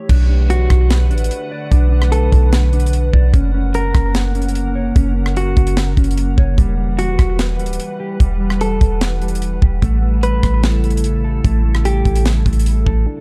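Melancholic and hazy, this atmospheric cloud-rap excerpt in B minor moves at 148 BPM with a half-time feel, cycling through Bm7, F#, Emadd9 and A7. A glassy, ethereal FM pad holds sustained chords through chorus, reverb, sidechain pumping and a low-pass filter, while a dark, clean electric guitar plays filtered, delayed arpeggios alongside a second fingered guitar carrying a melody from 0.5 to 12.2 seconds. Up front, a deep, boomy 808-style bass and a dry, polished funk kit with bright cymbals, a high-tuned snare and a tight kick anchor the small-room, dark mix.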